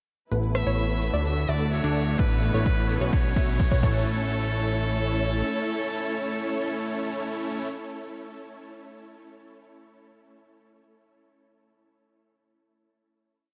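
Uplifting and triumphant festival progressive house, where a buzzy muted trumpet sings a motif-based melody over huge, detuned supersaw chords under a filter sweep. A lush pluck doubles those chords in the background, veiled con sordino strings sustain a dark pad, and a fat, nasal analog bass drives beneath, all four pumping with the sidechain. Crisp overdriven hats, shaker, rim and crash build with a faint riser until a punchy overdriven kick joins the drum fill at 2.2 s, and the kit drops away at 3.9 s before the final hit lands at 4.1 s in a dreamy mix soaked in vast reverb.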